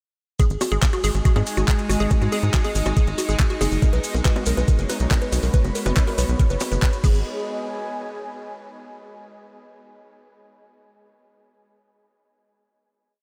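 A hypnotic, driving psychedelic trance piece at 140 BPM opens straight into its drop at 0.4 seconds, where an up-front knocking electronic kick pounds four-on-the-floor beneath a tight, saturated sequencer bass galloping in sixteenths, a woody wave-folded pluck cycling a dark accented three-step acid loop that drifts against the bar, metallic programmed hats, claps, bongos and crash from a garage kit, grainy hand-played maracas in the background, and an airy breathy pad with slowly shifting chords. From 1.1 seconds, a morphing detuned wavetable pad joins, droning sustained chords, while a very quiet formant-sweep wobble bass adds short answering phrases from 3.8 to 6.1 seconds before everything else gives way to the breathy pad's final note at 7.3 seconds.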